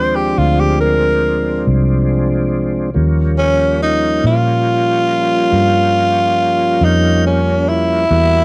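A cassette home recording with moderate studio reverb frames this gritty, soulful slow blues excerpt in 12/8 at 47 BPM, where a raspy, growling tenor saxophone sits up front carrying the melody over smooth tonewheel organ chords shimmering with chorus vibrato and slow rotary speaker, while a dark, round, foam-muted electric bass anchors the low end as the harmony moves from Bb9 to Eb9 at 3.0 seconds.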